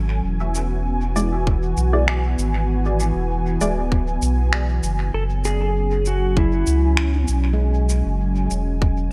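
Set in a spacious digital ambience, this deep ambient dub excerpt at 98 BPM in 4/4 rests on a round sine sub bass and a smooth, detuned sawtooth analog pad with chorus, both sustained from the start over chords moving from E7 to F#5. An echoing electronic shaker and finger snaps enter at 0.5 seconds, and a tight, up-front electronic kick joins at 1.5 seconds, while a muted, evolving filtered chord stab with phaser and dub echo flickers briefly early on. A dark, clean lap steel guitar plays a slide melody with volume swells from 5.1 seconds, and a bright, ringing handpan adds meditative arpeggios through dub echo from 7.5 seconds.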